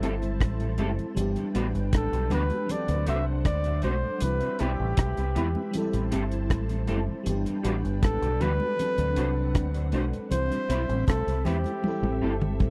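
A tender, smooth lovers rock groove at 79 BPM opens with a breathy, close-miked flugelhorn singing the melody with light vibrato and tape echo, over an up-front deep reggae drum kit with a tight kick, a round, punchy dub bass, and congas on bright, high-tuned skins joining at 0.2 seconds. Behind them sit a silky string machine, a dreamy chorused FM electric piano with a soft pad layer, a very quiet flute-like tonewheel organ, and slightly broken-up, lo-fi guitar stabs through a small old amp with ensemble chorus and tape echo, all moving through Am7, Gmaj7, D7 and Cmaj7 in G major. The dry, close 1970s-style studio sound gives the cut an intimate feel, and a drum fill at 11.8 seconds closes the section.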